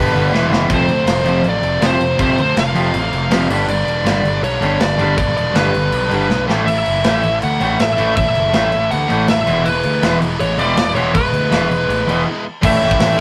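A rough rehearsal-room recording with light reverb opens this energetic, upbeat punk rock excerpt, cut from a longer piece and driving along in a straight 4/4. Up front, a smooth overdriven lead guitar carries the melody in a warm, picked voice. Beneath it, a cranked stack guitar plays a bright, overdriven riff down low, while a compressed distorted electric guitar and a double-tracked tight distorted guitar add further picked riffs in the background. A fuzz picked electric bass growls with a punchy, direct and amped tone, and a tight metal drum kit with a medium-tuned snare, tight kick and rolled-off top enters at 0.3 seconds with a fill, working through crash cymbal, hi-hat, kick and snare. Another drum fill lands at 6.3 seconds, and a brief break at 12.3 seconds closes the passage as the chords cycle from E through F, G and A before returning to E and ending on A.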